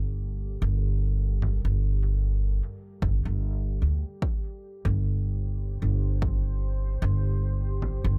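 Ambient dub in G minor at 75 BPM with a swung sixteenth feel, this hazy, spacious excerpt rests on a single Gm9 chord, where a deep, detuned sawtooth pad with chorus and built-in reverb sits far back under an up-front, woody pizzicato upright bass, while a punchy, layered electronic kick plays from 3.0 to 6.4 seconds and muffled, pitched-down, overdriven congas surface in brief touches at 1.4 and 7.8 seconds, all in a dry mix.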